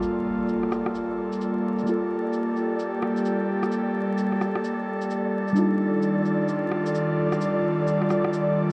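An airy, breathy pad sits up front in this short future garage excerpt, holding soft, mellow sustained chords with a slow attack, long release and a touch of chorus. Beneath it, muted, felt-like synth keys play dark, intimate accompaniment in the background, their fast-attack notes decaying through chorus and tape echo. An overdriven electronic shaker and rim click, filtered to a dull edge, carry a swung 130 BPM pulse in 4/4 until 8.4 seconds. A wind-like tuned noise texture hovers on a high D with its own reverb, adding a ghostly breath across the whole passage. The harmony rests on G minor 9 before shifting to E-flat major 9 sharp 11 at 5.6 seconds, all set in a moderate digital room with a film of vinyl crackle that deepens the wistful mood.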